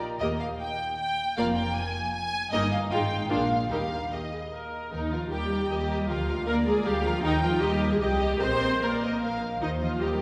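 A wet concert-hall reverb places this string orchestra further back in the room, letting the bowed sections bloom into a lush ensemble sound. It is a quick, graceful and lively classical-period movement in triple time, cut from a longer piece and played with a flexible, rubato feel. All five sections enter together at 0.2 s: the first violins carry the melody with a warm, expressive, vibrato-rich tone that sits at a slight distance, while the second violins trace a focused second line with a smooth top. The violas sit close and up front with an even, rich accompaniment, and beneath them the cellos add portamento and expressive vibrato alongside a close, rich and focused double bass section. The same opening phrase is heard twice, the second pass starting at 4.9 s, with the harmony circling between home and dominant chords before settling on a final cadence at 9.6 s.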